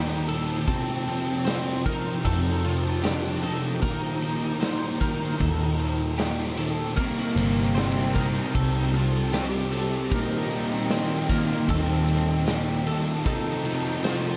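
A wistful, blissful stretch of shoegaze-tinged dream pop opens with a smooth overdriven lead guitar singing its melody over chiming twelve-string electric guitar arpeggios, both trailing a diffuse ambient delay, while the clean twelve-string also carries a shimmering analog chorus. Up front, a thick fuzz guitar grinds out a riff thickened by distortion and ensemble chorus, anchored by a dark, round, foam-muted picked bass. A huge arena drum kit with a punchy kick, medium-tuned snare and bright crash and ride cymbals drives a straight 4/4 at 76 BPM, joined at 0.7 seconds by a very quiet, jingly tambourine. At 7.0 seconds an overdriven electric guitar slips in behind the others with a reverse-reverb riff. The chords drift through Eb, F7, Eb6 and Cm7 in Eb lydian, and the whole mix is soaked in a vast, dreamy reverb that blurs the layers into a single glowing haze.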